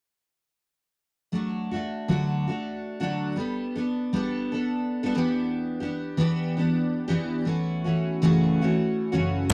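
A gently swung 4/4 pulse at 117 BPM, with a 55% lilt on the sixteenths, carries this short pop fragment cut from a longer piece. The mood is sunny and easy-going, set in D major with tuning at A4 = 439 Hz. The only part is a picked steel-string acoustic guitar playing accompaniment from 1.3 to 9.5 seconds. It is a full-bodied jumbo tone, double-tracked and sitting up front, ranging from F#2 to A4. The chords move from D to Gadd9 at 3.4 seconds, then Em7, and arrive on F#m7 at 7.5 seconds. A light reverb touches an otherwise dry, close 1970s-style studio sound.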